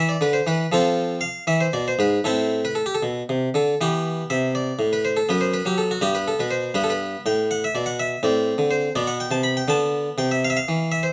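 A solo harpsichord with a single set of strings, bright and airy in its plucked Italian-style voice, sits up front in this grave, solemn baroque-style suite movement in 6/8 played with flexible rubato. The brief fragment, cut from a longer piece, states its opening phrase and then begins a second pass at 3.8 seconds, spanning from the low bass to the upper treble. A moderate studio reverb gives the instrument a modest sense of room around its tone.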